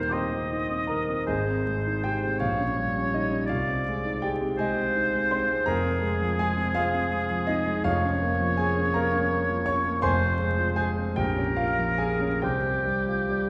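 Romantic classical music for oboe and concert grand piano, solemn and melancholic in a rubato 6/8, in which a clear, vibrato-laden oboe sings the melody up front while the warm piano, with deep bass and audible action noise, supplies the accompaniment throughout this fragment of a longer piece, heard from further back in a reverberant concert hall beneath a vintage layer of vinyl crackle.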